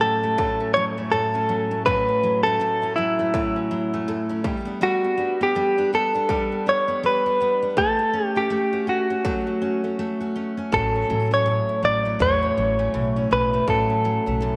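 Bathed in a wet plate reverb, this heartfelt, carefree acoustic pop excerpt moves with a gently swung 4/4 feel. A warm, clean electric guitar, recorded direct and compressed, carries the melody up front over a full-bodied, picked jumbo steel-string acoustic, while a bright, fingerpicked flamenco guitar with audible finger squeak sits in the background and a distorted electronic kick drum enters at 0.4 s. A woody, growly pizzicato upright bass joins at 10.7 s.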